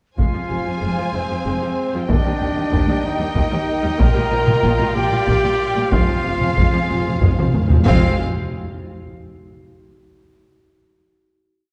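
Heavy-stick taiko drums drive this short, relentless cinematic orchestral cue in F dorian, pounding a compressed, saturated ostinato at 63 BPM in 6/8 while hard-mallet timpani strike at the opening and return with a fill from 5.9 seconds. Above, a lush bowed violin section carries the melody with expressive vibrato, doubled at the octave by a pure, distant flute and in unison and thirds by a classical trumpet, as a second violin line, a background horn section, a studio string section and a very quiet viola ostinato fill out the harmony over Fm, Eb and Bb6. Cellos and a smooth, rich double bass section anchor the low end in a dark concert-hall space, and the drums ring on into a final chord that closes the piece at 9.8 seconds.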